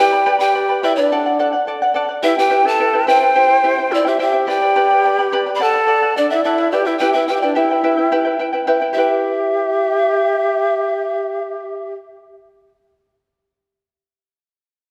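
Opening together at 0.0 s, an airy, vibrato-laden pan flute carries the melody over a breathy end-blown quena's second line and a fingerpicked charango's shimmering double strings, all placed up front in a wet concert hall, as this earthy, wistful Andean folk piece in E minor moves at 107 BPM in a straight 2/4 through a cycling G, D, Em, C progression before the flutes stop at 11.9 s and the charango rings alone until the cut at 12.7 s.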